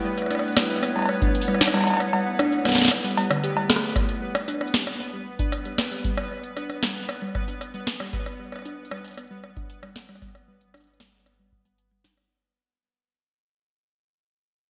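IDM excerpt at 115 BPM in G lydian, intricate and glitchy, where a warbly, nostalgic tape-like pad holds sustained chords until 4.0 s while a soft, ringing harp-like synth pluck spins arpeggios that take on a filter sweep from 4.0 s, a bright pulsing gated texture shimmers beneath, and a deep, up-front electronic kick joins a booming analog drum machine with crisp snare, metallic hats, cowbell and rim click under gated reverb, the kick dropping out from 1.9 s before a drum fill leads into a fade-out, all set in a lush hall with bright 1980s-style digital polish.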